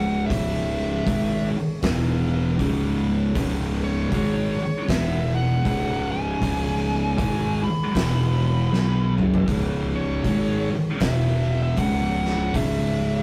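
Hypnotic and ominous, this stoner and doom metal excerpt crawls at 78 BPM in 4/4 with a swung eighth-note feel, set in C# minor and tuned slightly sharp to A4 = 444 Hz. Two thick fuzz guitars carry the riff throughout. One is dark and up front, and the other is a very quiet, warm double underneath. A growly, overdriven fingered bass adds fuzz at the bottom, while an oversized, low-tuned acoustic kit with a fat snare and punchy kick plays from 0.3 to 12.8 seconds, its sound gritty and pumping in a bright stone room. A compressed, dark fuzz lead guitar sings the melody high above, and a soft, flute-like tonewheel organ with slow rotary vibrato holds very quiet sustained chords beneath it. The harmony circles between C# minor and power chords on E and C#, a drum fill breaks in at 8.7 seconds, and the whole excerpt has the rough, saturated feel of a rehearsal room with a moderate stone-room reverb.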